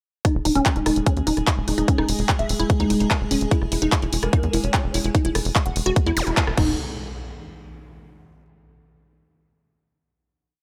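A punchy, up-front four-on-the-floor electronic kick drives this brief, alien and hypnotic psychedelic trance piece at 147 BPM, joined by a big-room kit of closed and open hats, rim clicks, claps and crash, and by a tight sawtooth sequencer bass rolling in sixteenth notes. A woody, wave-folded pluck plays an accented acid riff through chorus, tape echo and sidechain pumping, while a bright, morphing wavetable pad holds sustained chords in the background with phaser, and a nasal, formant-filtered wobble bass surfaces at 4.2 seconds with dub echo. The harmony moves from Ebsus4 to E. Zaps and an impact enter at 6.2 seconds, just before a band accent at 6.4 seconds, and carry the piece to a final hit.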